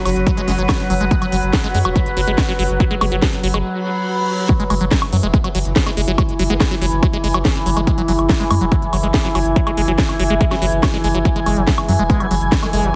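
An overdriven, heavy electronic kick sits up front in this hypnotic psychedelic trance excerpt, driving a straight 4/4 alongside an overdriven techno kit with a cracking snare, smooth hats and woodblock, while a round, deep analog bass anchors the low end and a squelchy, resonant acid bass riff runs through phaser, delay and sidechain pumping. An overtone-sweeping drone with chorus and reverb holds sustained chords over a blurred, detuned granular cloud pad in the background, and a very quiet, nasal wobble bass surfaces in brief second-line fragments. A reverse cymbal at 3.8 seconds leads into the drop at 4.5 seconds, all under a heavily compressed, radio-like sheen with light digital ambience.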